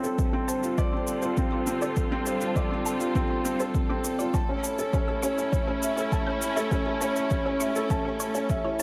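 A felt-muted upright piano opens with a soft, intimate riff carrying delay and audible action noise, over lush bowed strings whose sustained chords pump and sit behind a low-pass filter, with a shaker alongside, in this moving, melancholic piano and strings electronica cut from a longer piece in D minor at 101 BPM. From 0.2 s a punchy, up-front electronic kick and a very quiet detuned sawtooth pluck playing arpeggios join the build-up, moving from Dm7 to A at 4.3 s. A moderate concert hall reverb surrounds the mix.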